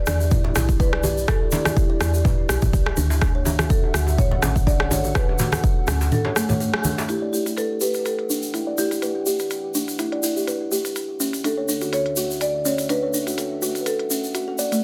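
A woody marimba melody with dub echo opens this earthy afro house excerpt at 124 BPM in E dorian, its 16ths carrying a light swing. Almost at once a plucked, hollow-box kalimba arpeggio sits up front with sidechain pumping, a low-pass filter and its own dub echo, while a deep, detuned analog pad holds moody chords in the background, chorused and pumping. The first half is anchored by an up-front electronic kick with a tape-warm edge, a round FM bass, and background congas and a cracking djembe. Beneath them run an afro-pop kit of crisp hats, rim clicks and toms and a grainy, distant egg shaker. The kick and bass drop out around 6 seconds, and after a band accent at 6.7 seconds the congas and djembe follow by 7.1 seconds, leaving kit, shaker, pad, marimba and kalimba, with a filter sweep running on the kalimba from that point. The harmony moves from Em7 to Dadd9, then Em to Dadd9, under a dense, heavily limited modern master with light studio reverb.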